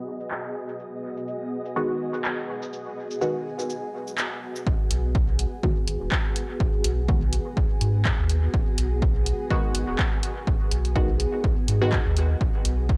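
Dub techno at 124 BPM in G# minor, this meditative, deep passage cut from a longer piece sits on a G#m7 chord with a lightly swung sixteenth feel. A cloudy granular pad holds sustained, blurred chords throughout, joined at the start by a flickering, grainy texture in the upper reaches of its range, both carrying their own reverb and sidechain pumping. From 0.2 s a punchy analog drum machine brings handclaps, hi-hat and shaker through a dub echo, and at 1.8 s a muted, detuned sawtooth chord stab arrives with chorus, phaser, cassette tape colour and dub echo, while a filter sweep shapes the opening. At 4.7 s the piece shifts into its fuller part as a round sine sub bass with transformer saturation and an up-front electronic kick drop in together, the grainy texture falling away until it returns near the end at 12.4 s. The overall sound is dry, gritty and hardware-recorded, dulled by cassette tape and a low-pass filter.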